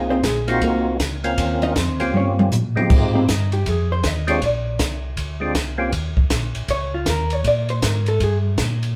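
A dark, picked hollow-body jazz guitar takes a compressed solo across this greasy, bluesy soul jazz organ trio excerpt, swinging at 158 BPM in Eb mixolydian over chords such as Ab13, Eb13 and Fm7. A fat, percussive tonewheel organ with key click and slow rotary speaker carries the melody until 5.9 seconds, while a round, mellow second organ voice holds down the bass line with chorus vibrato. An up-front, dry cocktail drum kit with a punchy kick, high-tuned snare and dusky cymbals drives things along, adding a fill at 2.1 seconds, all captured as a band playing live in one room with moderate reverb.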